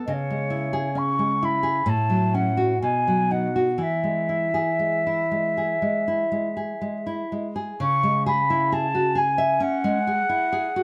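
Romantic flute and classical guitar duo, lyrical and tender, drifting with rubato at about 59-70 BPM in 4/4, where a fingerpicked nylon-string guitar accompanies through C#m, F#m/A, B and E before the music moves from E major into C# minor at 7.8 s, while an airy, straight-toned concert flute with a soft attack sings the melody between C#5 and C#6, both captured close and dry in this short, detailed excerpt cut from a longer piece.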